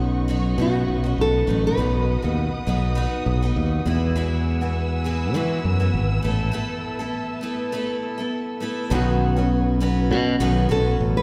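A growly, punchy fingered electric bass sits up front in this sunny, easy-going acoustic pop cut, taken from a longer piece, with a gentle sixteenth-note swing in common time. Beside it, a picked twelve-string acoustic guitar carries the accompaniment throughout, its octave-doubled shimmer and occasional finger squeak sounding close and present. A full-bodied, classical-style nylon-string guitar plays the fingerpicked melody at the opening, pauses at 2.2 seconds, and returns for a new section at 8.9 seconds. Underneath, a muted string section holds lush, veiled chords played con sordino with vibrato and soft attacks, sitting quietly in the background until it drops out at 8.9 seconds. The harmony moves from Badd9 through B, Eadd9 and Asus2 before landing back on Badd9, with a break arriving at 6.5 seconds. Everything is bathed in a long church reverb that gives the recording the airy resonance of a large hall.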